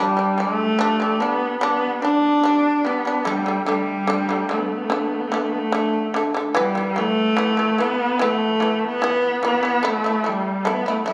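Captured on a phone in a wet recital hall, this 11.1-second excerpt of Mongolian traditional music moves at 73 BPM in a straight 4/4 G gong mode with a vast, galloping mood, as a bright, husky horsehead fiddle sings the melody up front with vibrato and portamento while a buzzing, percussive plectrum-plucked shamisen plays arpeggios over G5, D5, E5 and A5 chords.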